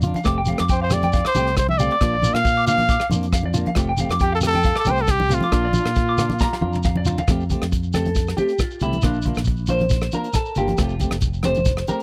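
Highlife guitar band music in F major at 137 BPM, joyful and danceable, with a lightly swung 16th-note feel and a dry, close 1970s-style studio sound. Brushes on an up-front, punchy kit, damped background congas, grainy shekere and a fingered electric bass carry the groove under a compressed clean electric guitar and a picked semi-hollow guitar arpeggiating through spring reverb and tape echo, over chords moving between Fadd9 and Bb. A close-miked trumpet with light vibrato plays the jazz-style melody from 0.7 to 6.9 seconds, and after a drum fill the clean electric guitar takes a solo from 7.3 seconds to the end of this cut from a longer piece.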